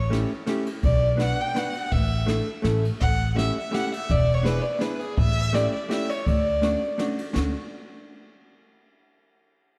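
A dark, woody fiddle with light vibrato and an analog delay carries the bowed melody up front in this nostalgic, charming musette waltz at 166 BPM in 3/4 with a gentle swing in D major, over a pizzicato upright bass with steel strings, a clean, compressed, picked hollow-body electric guitar comping through changes from A7 and Bm to E7 and a closing Dmaj7, and a brushed jazz kit with a boomy kick and shadowy cymbals, all bathed in a lush hall reverb that gives this short cut from a longer piece a dreamy glow.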